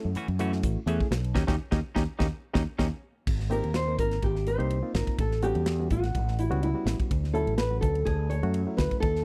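A dry, close 1970s-style studio sound frames this funky, slick electric jazz fusion at 125 BPM with a light sixteenth-note swing, moving through rich chords from B9sus4 to Dmaj9. A barky, reedy electric piano comps above a round, up-front fretless bass with analog chorus, while an airy, polished drum kit brings bright cymbals, a medium-tuned snare and a punchy kick. Twangy, compressed electric guitar stabs with subtle chorus drop out at 2.9 s, and a band accent and drum fill lead into a new section at 3.3 s, where a small, thumb-plucked nylon-string guitar takes the melody from 3.5 s with finger squeak and slapback echo.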